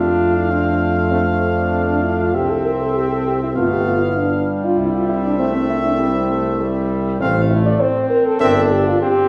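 A mellow French horn sits at the heart of this brief classical brass quintet passage, carrying an accompaniment from C4 up to D5 with light vibrato and a vintage color. Above it, a brilliant, punchy trumpet sings the melody in a high band between E5 and F5, while a warm flugelhorn traces a second line lower down, also with light vibrato. A clear trombone adds accompaniment from the background, sounding distant and roomy, and the tuba stays up front on the bass line. The rubato feel and noble mood unfold over harmony moving from F through C and G7, arriving on C/G at 8.4 seconds. A reverberant recital hall gives the ensemble the spacious sound of a church or concert hall, with the trumpet and trombone stopping at 8.6 seconds and the horn and flugelhorn sounding until 9.3 seconds.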